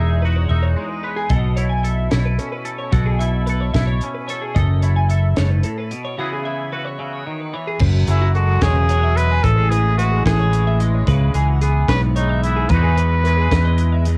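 A dry home cassette recording captures this restless, wistful math rock and midwest emo fragment in 6/8 at 74 BPM, where a twangy, scooped electric guitar with analog chorus and a bright, compressed twelve-string playing arpeggios play alongside a round, amped fingered bass sitting up front. A crisp fusion kit with a high-tuned snare and tight kick enters at 1.3 s, and after a break at 6.2 s the chords move from F#m11 through Amaj9 toward Emaj9. A clear, distant trumpet with light vibrato carries the melody from 8.1 s.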